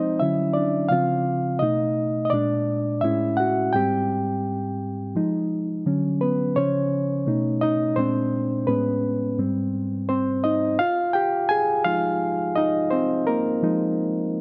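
A relaxed 85 BPM groove in 4/4 with a 60% swing on the 16ths sets up this smooth, soulful R&B excerpt in F minor, tuned to A4 = 441 Hz. A reedy, bright electric piano plays solo and up front from 0.0 to 14.4 s, its clean tone coming through built-in speakers and sitting in light reverb and digital ambience. It moves through lush seventh and ninth chords such as Dmaj9, Bb7 and Amaj9 before settling on Fm7 as a new section begins at 10.8 s.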